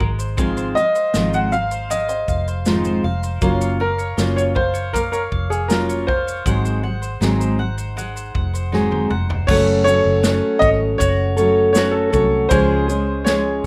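Sunny and carefree, this 79 BPM acoustic pop excerpt sets a fingerpicked dreadnought steel-string guitar up front beside a woody, double-strung mandolin picking arpeggios, a dark, round, foam-muted electric bass and a natural country drum kit with a punchy kick and shaker, while a clear, smooth upright piano carries the melody from 0.8 s with a slapback echo, and a drum fill at 8.7 s leads into a new section at 9.5 s as the chords move from Ab6, Gbmaj7 and Ab7 to Gbm and Db.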